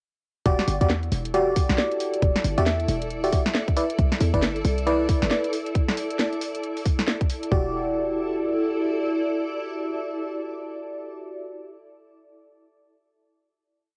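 Two-step kicks and skipping swung hi-hats with a cracking snare drive this moody, bouncy UK garage piece at 136 BPM in E minor, where a punchy short 808-style bass line and glassy, bell-like FM electric piano stabs with chorus and tape echo ride over a cloudy, evolving granular cloud pad. A round, tine-like thumb-piano-like synth pluck adds brief mellow phrases in the background until 5.5 seconds, and once the drums stop at 7.5 seconds the pad and piano hold a final Em9 chord while the bass carries on briefly, all captured as a cassette home recording with light reverb.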